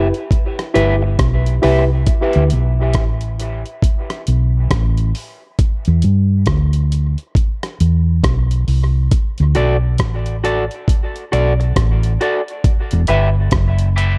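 Awash in echo-heavy digital ambience, this hypnotic, meditative dub reggae excerpt in E minor sways at 68 BPM, anchored by a dark, round hollow-body bass played with the fingers and a gritty, compressed sampler-style kit with a thumpy kick, hi-hat and rim click, while a slightly broken-up picked electric guitar and a reedy, worn, slightly out-of-tune electric piano drift in and out through high-pass filtering and dub echo, the guitar returning at 9.6 seconds and the piano at 13.1.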